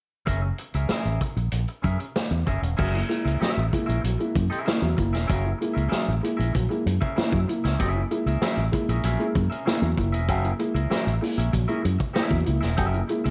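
An energetic, gritty funk groove at 96 BPM in F# mixolydian opens at 0.3 s on an F#9 chord, with an up-front fingered electric bass run through an envelope filter, a punchy vintage drum kit with dark cymbals and a rolled-off top, and a clean, twangy picked electric guitar sitting lower in the mix. At 2.8 s a dark, woody upright piano joins with short stabs, its slightly detuned, boxy, worn tone carrying audible action noise and an intimate feel. The guitar, drums and piano share a cassette-tape character, and light small-room reverb surrounds the whole home-recorded excerpt.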